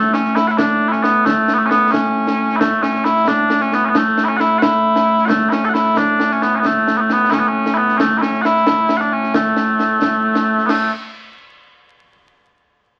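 A straight 6/8 lilt at 89 BPM in A major carries this proud, ceremonial Scottish pipe tune, cut from a longer piece, where sweet, mellow small bagpipes hold a continuous solo melody with vibrato up front from 0.0 seconds while a close, dry concert snare drum, concert bass drum and bright clash cymbals sit lower in the mix beneath them until 10.8 seconds, all heard through moderate studio reverb and the crackle of a very old 78 rpm record.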